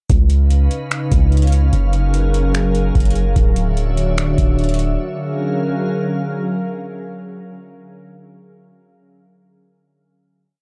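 Dreamy and floating, this brief atmospheric cloud-rap piece sets a glassy, ethereal FM pad, soaked in ensemble chorus and reverb and pumping against the beat, moving through C#9, F#maj9 and Dmaj9 chords, over long, deep sine 808 notes that follow the kick and a booming analog drum machine whose sparse half-time pattern of kick, finger snaps and metallic hats with fast hi-hat rolls drops out at 4.9 seconds. The bass fades at 5.0 seconds, leaving the pad to ring alone on F#maj9 until 6.6 seconds, all captured with a dry, gritty cassette-tape character.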